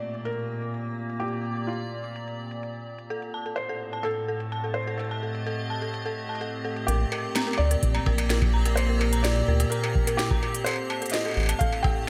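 Playful and glitchy, this IDM excerpt at 127 BPM in Bb major sets a soft, felt-muted upright piano melody with audible action noise against an icy, crystalline glass pad that pumps under sidechain and carries a filter sweep until 6.9 seconds, while a clanging, overdriven industrial kit of crisp hats, snare and struck metal runs throughout, an eerie, inharmonic FM bell arpeggiates from 3.1 seconds, a rubbery, nasal square bass joins at 6.9 seconds and a deep, tape-warm electronic kick follows at 7.8 seconds, all in bright 1980s-style digital production with light reverb.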